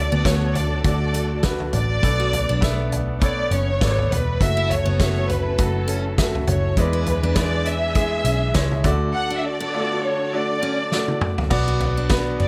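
Piano-driven pop with an uplifting, anthemic mood and a light swing, cut from a longer piece. A bright, woody upright piano carries the accompaniment while a violin section sings the melody up front with expressive vibrato and portamento, a lush, dark string section holds sustained chords in the background until 11.5 seconds, and a picked steel-string acoustic guitar plays a full-bodied riff with audible finger squeak behind them. Underneath, a round, foam-muted vintage electric bass and a loose, roomy indie drum kit with a fat snare, punchy kick and shadowy cymbals move through D, Bm7, F#m7 and E7, with a drum fill at 10.9 seconds before the turn to Bm.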